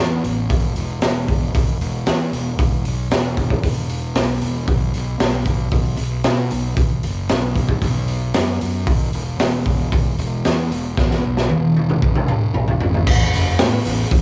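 A raw garage drum kit sits up front, its high-tuned snare and punchy kick pressed into a gritty, saturated tape sound with a pumping small-room feel and a rolled-off top end. It comes in at 0.2 s across crash cymbal, hi-hat, kick, snare and toms, and a drum fill runs from 11.0 to 13.1 s before the music moves into a new section. Beneath it, a fingered electric bass starts from the first moment, bright and growly with heavy fuzz and overdrive, sitting low in its register and also placed close and punchy in the mix. The piece is hazy, wistful rock leaning into shoegaze and dream pop, with a straight, steady 4/4 pulse. A light reverb and the home-cassette character lend the whole short cut, taken from a longer piece, a lo-fi, intimate quality.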